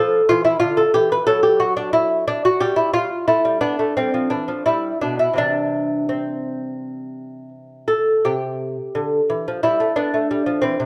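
A solo lute, fingerpicked on delicate double nylon strings, some of them octave-doubled, and set up front in a moderate recital-hall reverb, opens this grave, introspective baroque-style dance in C major at a rubato 81-93 BPM, moving from D minor through G and C across a brief cut from a longer piece before shifting into a new section at 8.3 seconds.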